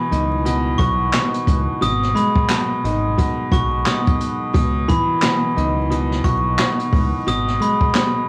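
Vinyl crackle and studio ambience with light reverb frame this reflective, gritty boom-bap hip-hop excerpt at 88 BPM with a swung 16th-note feel in C# minor, where a bell-like glockenspiel melody struck with hard plastic mallets rings through tape echo over a worn, woody, slightly detuned upright piano moving between C#m11 and G#m7, a dark, round fingered dub bass, and an up-front brushed jazz kit with a boomy kick, high-tuned snare, hi-hat and handclaps.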